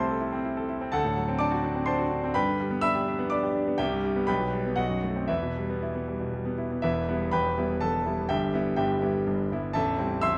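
Agitated and passionate, this brief cut from a longer classical virtuoso piano study in 3/4 moves with a rubato feel as a solo concert grand, clear, smooth and vintage with a deep bass reaching down to A0, sits up front through close, detailed microphones in a moderate recital hall reverb, its harmony pressing from Am/C through D7, G and Cmaj7 to a B7b9 that resolves on Em at 5.3 seconds before easing to Am7 near the close.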